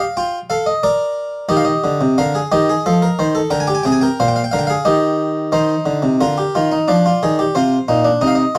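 A classical, baroque-style fugue in three voices for solo harpsichord, this short passage is cut from a longer piece and carries a joyful, lively mood in a straight triple metre. The harpsichord has a plucked, round tone in the French style, played on one set of strings and placed up front, spanning Bb2 to Ab5 throughout its 8.6 seconds. The harmony moves through dominant-seventh chords that resolve to the home chord before the second section begins at 5.5 seconds, where a diminished chord leads to a minor one. The production is dark and warm, set in a moderate studio ambience with a short decay.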